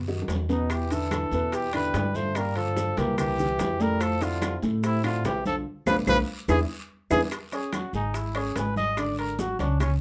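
A moderate club reverb surrounds this sultry, driving Afro-Cuban jazz excerpt at 145 BPM, with a steel-string pizzicato upright bass up front and a dark, boxy upright piano moving through chords such as Em7, Gm7 and Fmaj7. A mellow trumpet with scooped notes carries the melody while a bassoon with light vibrato adds a second line until 7.2 seconds, over percussion of thick-skinned congas, tight high-tuned bongos, ringing metal-shell timbales, woody claves, a raspy guiro and grainy maracas. A drum fill and band accent lead into a trumpet solo from 7.3 seconds to the end.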